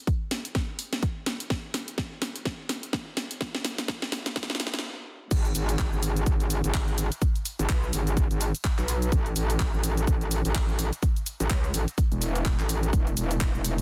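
Bass house at 126 BPM in G# phrygian with a swung 16th feel, gritty and aggressive, opening on a build-up where a punchy electronic kick and a tape-warm house kit of crash, handclaps, hi-hat, shaker and cracking, clipped snare carry a drum fill under a filter sweep before a brief stop at 4.8 seconds. The drop lands at 5.3 seconds as a metallic FM wobble bass enters, distorted, overdriven and chorused, with sidechain pumping. The mix is dry, dense and heavily limited, with every part up front.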